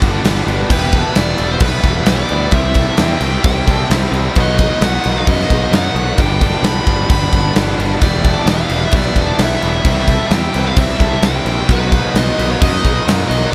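Wrapped in a small room reverb, this hazy, blissful shoegaze and dream pop excerpt moves at 131 BPM in 4/4, led by a huge, up-front arena drum kit with a punchy kick, bright cymbals and a pumping hall sound, over a growly electric bass. Two biting overdriven guitars play riffs, one sitting in the background with reverse reverb, while a very quiet double-tracked distorted guitar and a very quiet shimmering, octave-doubled twelve-string acoustic picking arpeggios with audible finger squeak fill out the texture. From 0.7 seconds a dark, smooth lead guitar with overdrive and analog delay carries the melody over a cycling G7, Em7, Cmaj7 and Bmaj7 progression.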